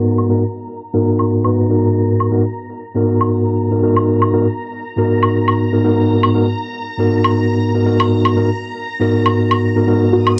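A mellow tine electric piano, up front and heard through built-in speakers with low-pass filtering, cassette tape colour and tape echo, plays G#m9 stabs across this moody, late-night deep house excerpt at 119 BPM in G# minor with a 55% swing on 16ths. It is joined by a shimmering sawtooth string machine of violins, pitched high and quiet, with ensemble chorus and plate reverb, an electronic layered woodblock entering at 0.2 seconds, and a soft round pluck that sounds a single dark F#4 arpeggio note at 10.1 seconds. Everything sits inside a small room, with a filter sweep running from the start to 10.1 seconds across this home cassette recording.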